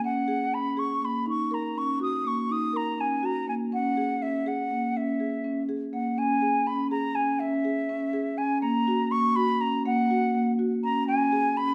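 Pulsing in a straight 5/8 at 244 eighth-note beats per minute, this urgent, hypnotic contemporary instrumental excerpt sets an airy, tongued silver concert flute melody with vibrato over mellow, round arpeggios from a soft-mallet marimba, both parts playing throughout the 11.7 seconds in a wet recital hall reverb as the harmony moves from Ebm7 through Dbm to Gb/Bb.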